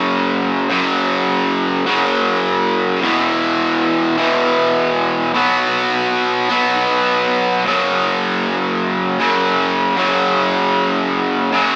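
The recording has a small-speaker sound, as if a band were playing live in one room, with a wet stone-room reverb hanging around it. It is a brooding yet cathartic rock passage, cut from a longer piece, moving slowly at 52 BPM in a straight 6/8 and tuned slightly low to A4 = 439 Hz. A single distorted electric guitar carries the whole thing. It is picked, double-tracked and sitting up front, its bright, overdriven tone ranging from E2 to B3. The guitar moves through power chords on F#, E and B, then returns to F# at 7.7 seconds, where a new section begins and runs until the passage breaks off at 11.8 seconds.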